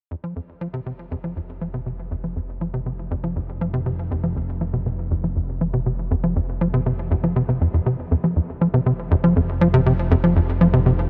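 Hypnotic and mysterious, this 120 BPM excerpt of ambient, sequencer-driven space music sets a punchy, dark sawtooth sequencer bass riff up front, colored by analog chorus, cassette tape and delay, over a fat, nasal, detuned analog bass on F1 that fades in from 0.1 seconds, all resting on an F5 chord within a light reverb and digital ambience.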